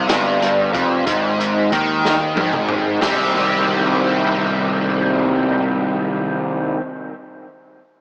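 A slow 6/8 sway at 61 BPM carries this dark, hypnotic psychedelic rock fragment in C minor, where a bright, double-tracked cranked stack guitar riff with overdrive, rotary speaker and tape echo sits up front over punchy fuzz bass, while a gritty, saturated breakbeat kit with a tight kick and rolled-off top plays a fill from 2.0 to 3.0 seconds and drops out at 3.2 seconds as the harmony shifts from F5 to Cm, within an echo-heavy small-room mix with a small speaker sound.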